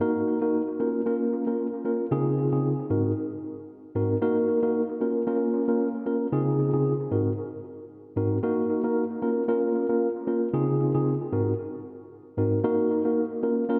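At 114 BPM in 4/4 with a light swing on the sixteenths, this breezy, sunny afrobeats passage in D-flat major is carried entirely by a mellow, clean tine electric piano, sitting up front as if heard through its own built-in speakers and trailed by tape echo. The piano cycles through Ebm, Bbm, Dbmaj7 and Ab7, with a new section arriving at 6.3 s, over a range from Ab2 to Bb4. A long, lush hall reverb soaks the mix in a dreamy haze, and the passage is cut from a longer piece.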